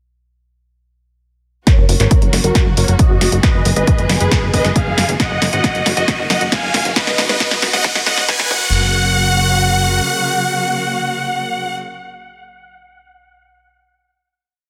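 A heavy four-on-the-floor kick at 136 BPM drives this euphoric, uplifting trance piece in F# major, where a huge, detuned supersaw riff in thirds and sixths, with phaser, sidechain pumping, dub echo and a filter sweep, rides over expressive bowed symphonic strings with vibrato, a plucky analog bass rolling in sixteenths, and a punchy, tape-warm techno kit of hats, backbeat snare and crash, while a very quiet riser enters at 4.5 s as the build reaches a final hit at 8.7 s, all set in a lush hall.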